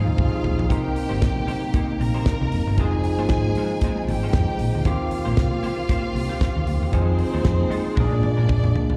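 A fat-snared, tight-kicked 70s drum kit sits up front in this sultry, danceable disco cut at 116 BPM with a swung sixteenth feel, playing fills at 0.0 and 8.0 seconds over a round, dark hollow-body fingered bass, while a barky, gritty tine electric piano, a clean, compressed semi-hollow guitar with analog chorus, a fast-rotary tonewheel organ with key click and high-tuned congas struck with hard hands sit in the background alongside a lush, bowed string section touched with slapback echo, the changes moving through Fm7, Cm7 and Eb69 as heard through a live venue's PA with recital-hall reverb.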